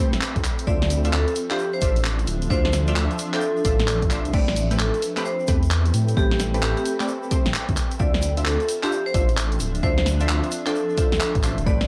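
A swung, skippy two-step groove drives this bouncy UK garage excerpt, built on a punchy analog kick drum that sounds re-recorded in a small room, while a layered house kit with a cracking snare, handclaps, hi-hat and crash cymbal carries a tape-softened sheen from a larger space. A grainy tube shaker sits in the background. Underneath, a deep, rumbling detuned saw bass sits up front with a beating unison edge. The harmony moves from Dm9 to Am9 at 4.3 seconds and back to Dm9 at 7.8 seconds, voiced by full-bodied sawtooth chord stabs with a filter pluck, chorus, phaser and tape echo, alongside a very quiet, breathy pad and a blurred, evolving granular cloud that pumps against the sidechain behind its own reverb. A bright, metallic vibraphone struck with hard mallets enters at 0.7 seconds, its ringing melody trailed by tape echo, and the whole piece has a dry, gritty character with transformer saturation and cassette colour.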